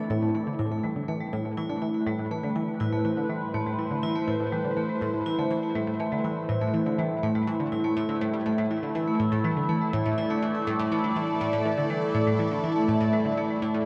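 Ambient, sequencer-driven space music at 122 BPM in A minor, this cosmic, expansive excerpt rests on an Amadd9 chord, with a swirling, detuned analog pad holding sustained chords under phaser and chorus while a vibraphone with medium hard mallets rings out metallic, airy arpeggios through tape echo. An up-front analog pluck with a nasal, round sawtooth tone repeats a low riff from 0.1 s, colored by chorus, phaser, cassette tape and tape echo, and a very quiet pulsing gated texture sounds only for the opening 0.6 s. A vast cathedral reverb with a 6.3-second decay surrounds the parts.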